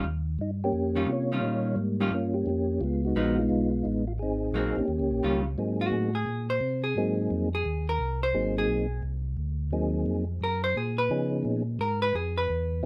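A clean, hollow-body electric guitar accompanies a round, dark tonewheel organ bass line colored by chorus vibrato and a slow rotary speaker, and at 0.4 seconds a soft, flute-like percussive organ takes the melody with its own rotary swirl and plate reverb, setting up a swinging, greasy soul jazz organ trio over ninth chords in a lightly reverberant room, with the guitar stepping forward for a solo from 5.6 seconds.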